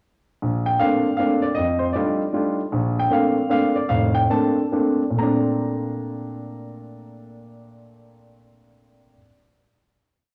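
Cassette tape and small-room ambience frame a lush hall reverb on this short, relaxed jazz waltz for solo baby grand piano, whose polished, up-front tone carries swinging song-like motifs over a stride bass and close voicings, slowing from 2.7 seconds before settling on a final chord at 5.2 seconds.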